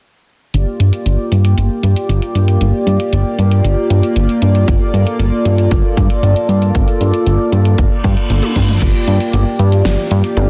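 Cinematic and nocturnal, this synthwave excerpt in G minor moves at a straight 116 BPM, built on a dark, shimmering pulse-width pad holding sustained chords from a Gm7 under sidechain pumping and shimmer reverb, a fat, nasal, saturated analog bass that carries a filter sweep, a pop drum kit with a fat snare and metallic hats, a punchy electronic kick entering at 4.7 seconds, and an electronic reverse cymbal with a drum fill leading into a new section at 8.8 seconds, all in a dense, heavily limited modern master.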